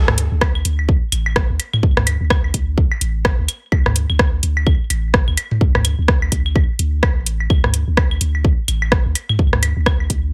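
Minimal techno with a cool, quirky mood and a swung 16th-note feel, cut from a longer piece, where a deep sine sub bass with a pitch-drop attack, tube saturation and sidechain pumping sits up front beside a punchy, tape-warm electronic kick and a layered house kit of metallic hi-hats and rim clicks, while analog electronic toms and claves ring in a larger room behind them, all within a mostly dry mix.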